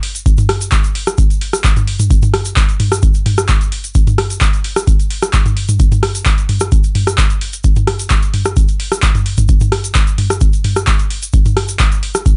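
House groove at 130 BPM in straight 4/4, gritty and hypnotic, cut from a longer piece and built entirely from percussion. A booming analog drum machine opens at 0.0 seconds with handclaps, metallic hi-hats, rim clicks and toms, joined by a grainy, bright, saturated tube shaker at 0.2 seconds and a deep, tape-warm electronic kick drum at 0.3 seconds that sits up front. The sound is dry and close, with little reverb and a dark top end.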